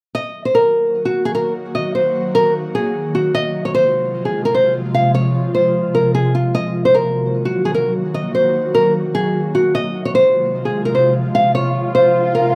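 A half-time hip hop groove carries this brooding, menacing excerpt, where a small, fingerpicked nylon-string guitar leads the melody up front over an ethereal, detuned pad whose chorused, plate-reverbed chords shift between Ebm and Fm, before an electronic swell enters at 11.2 seconds in a rough home demo mix with a wet studio reverb.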